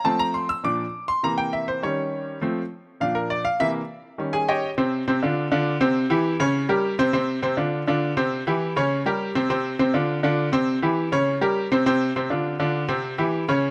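A bright baby grand piano opens alone in this short latin excerpt, setting a sunny, danceable mood at a brisk 203 BPM in a straight 4/4. Its tone is brilliant yet a little worn, up front and intimate, with audible action noise and a short sustain that keeps each chord crisp. The opening passage cycles through F, Bb, C7 and Eb7 in quick succession, and at 4.8 seconds the harmony turns to a repeating pattern of Csus24, C and Bbm69 that carries through to 13.7 seconds. The playing spans a broad range, from Bb2 up to E6. Close, detailed microphones and a light reverb give the recording a present, clear sound, and the clip is cut from a longer piece.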